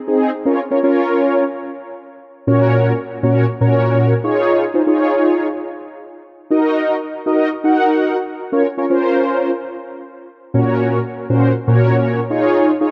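Pop in Bb minor at 119 BPM, this bittersweet yet driving clip features a lone mellow synth brass, brassy, round, detuned and dark with a filter sweep and vibrato, playing up front from 0.1 s to 12.9 s through chorus and analog delay in an echo-heavy mix with light reverb, over a Bbm, Gb/Bb, Dbadd9 and Ebm progression.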